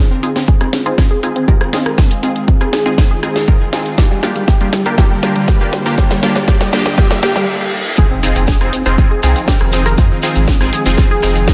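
Emotional and dreamy, this progressive house passage is cut from a longer piece and spends its first 8 seconds building up before dropping. An evolving, morphing wavetable pad sits in the background with slow-attack chords softened by chorus and its own reverb, while a tight, driving sequenced synth spins mellow detuned arpeggios through chorus and delay. A lush, bright unison pluck adds punchy stabs coloured by a phaser and delay, with a filter sweep carrying it through the build-up. The punchy, tape-warm electronic kick sits up front beside a layered house kit of hi-hat, rim click and a cracking, softly clipped snare, which plays a fill before a brief stop just ahead of the drop. Very quiet effects, including a reverse cymbal and an impact, mark the turn at 8.0 seconds, where a deep, thick saturated sub bass arrives with a grainy, close shekere tucked in the background, and the pad, arpeggio, pluck and bass all pump with sidechain compression under a dense, heavily limited master.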